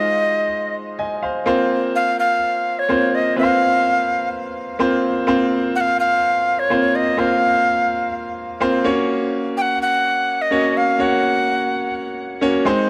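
Pop with an urgent, moody air, this excerpt pairs a breathy, woody tenor recorder melody, full of vibrato, chiff and tongued expression and touched by digital delay, with a bright, brilliant grand piano accompaniment, both up front in a lush hall reverb, as the harmony moves from Fm7 to Bbsus2 at 1.5 seconds and to Gb at 8.8 seconds, the recorder stopping at 12.0 seconds while the piano carries on to the end.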